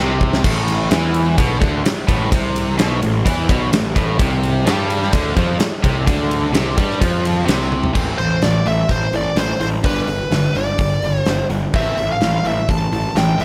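Classic rock with a swaggering, gritty strut, this cut opens on a cranked, double-tracked stack guitar riff over a growly fuzz bass and a huge arena drum kit with a punchy kick, bright cymbals and a pumping room sound, the drums adding a fill at 7.7 seconds before a bluesy distorted lead guitar takes up the melody at 8.2 seconds, framed by light reverb and studio ambience.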